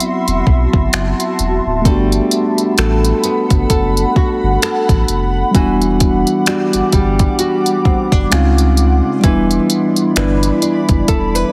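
Contemporary R&B with a romantic, tender mood, this excerpt from a longer piece swings gently in 4/4 under a heavily compressed, radio-like sound with light reverb. A mellow tine electric piano, a cloudy, blurred granular pad with sidechain pumping, and a soft electronic drum kit of finger snaps, smooth hi-hat and kick play throughout, joined at 0.3 seconds by a deep, thick, saturated sub bass sitting up front. From 1.9 seconds a full-bodied, fingerpicked nylon-string guitar adds arpeggios through digital delay, its finger squeak audible, as the harmony moves from Gmaj9 through Em9 and C#maj9 to G6.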